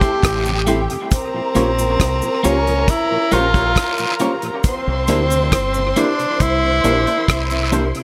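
At 68 BPM in a straight 4/4, this romantic, sweet lovers rock reggae excerpt rests on a damped 70s drum kit with a tight kick and dub echo and a deep, round, punchy fingered electric bass up front, while close guiro and cabasa add percussion, a clean, picked, twangy electric guitar plays stabs in the background, a bell-like tine electric piano and a very quiet, mellow tonewheel organ with slow rotary speaker fill in the accompaniment, a dark, lush bowed string section carries a second line with dub echo, and a breathy, intimate tenor saxophone with tape echo sings the melody over Fmaj9, Bbm6 and C9 chords in a small room.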